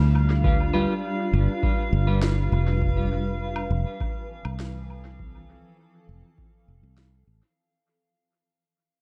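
A dry, echo-heavy mix fades out across this hazy, peaceful ambient dub excerpt at 101 BPM in 4/4, where a blurred, cloudy granular pad holds sustained chords moving from G7 to Fmaj7 at 2.8 seconds, a round, punchy fingered electric bass sits up front beneath a deep, tape-warm electronic kick, a drifting glassy harmonics texture shimmers with chorus high above, dark clean electric guitar stabs soaked in spring reverb and dub echo appear from 0.7 to 2.2 seconds, and a woody electronic snare with woodblock, also trailing dub echo, enters at 2.2 seconds.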